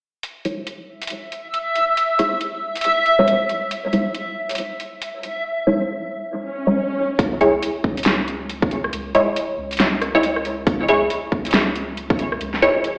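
Deep dubstep with a heavy, meditative mood, set in a swung, half-time groove and heard as a short cut from a longer piece. A filtered dub chord stab runs almost throughout, its muted, resonant, wave-folded plucks treated with phaser, subtle chorus and dub echo over a C#m chord, while a dubstep drum kit of rim click, metallic hats and a huge snare sits up front with a tape-warm, produced sheen. Early on, a reversed, granular texture with a dreamy, bright glow hovers on a single high note with its own built-in reverb, ending at 5.5 seconds. An electronic swell sounds at 6.4 seconds, leading into the second half at 7.2 seconds, where a punchy electronic kick and a soft, round sub bass arrive together, the bass sitting deep and low in the mix. The whole track is bathed in a wet spring reverb and large studio ambience, yet carries an AM radio character, like a big sound system ringing through a bare room.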